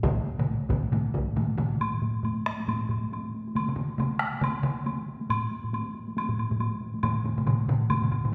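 Japanese traditional taiko ensemble music, driving and powerful at 137 BPM in a swung 4/4, with a close, dry solo taiko struck with heavy sticks up front, one ensemble of heavy-stick taiko in a live room, another of hard-stick drums in a small room, and a third vintage, band-limited hard-stick group that drops out at 1.3 s, before a woody, close woodblock enters at 1.8 s, the whole excerpt resonating in a reverberant recital hall.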